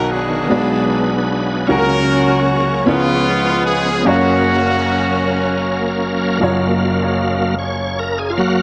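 A bright, shouting tonewheel organ stands out in this jubilant yet reverent gospel excerpt, its full, clean chords turning through a slow rotary speaker and chorus vibrato before it takes a solo at 6.4 seconds. The piece moves at a slow 51 BPM in 6/8 in F# major, with a straight feel. A clear, loose jazz-style horn section carries the melody up front with vibrato until 6.0 seconds, over a woody upright piano accompaniment. When the organ solo begins, a mellow, tight French horn section joins in the background with smooth, classical-style sustained chords. The harmony moves from B through Bm6 and F#/C# to C#7, resolving on F#maj7. Dub echo on the melody horns and piano and a moderate plate reverb give the mix a spacious, echo-heavy sound.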